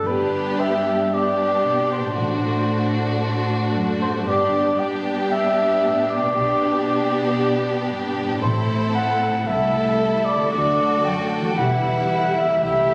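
Dramatic and stormy, this fast romantic orchestral passage in G major moves at 114 BPM in 4/4 with a rubato feel, cut from a longer piece. A dark, up-front cor anglais carries a smooth second line with light vibrato, while a soft-attacked chamber violin section sings the expressive, close melody. A clear, intense symphonic violin section adds a distant second line, and a lush viola section fills the background with accompaniment. A rich, focused cello section and an even, smooth double bass section anchor the bass, with a very quiet French horn section holding warm sustained chords and a fingerpicked concert harp ringing out arpeggios from the start. The harmony moves from G through D7/A and G/B to Am, D and finally Em, and the sound sits in a moderate scoring-stage reverb, though a phone recording in the room adds club reverb and compression.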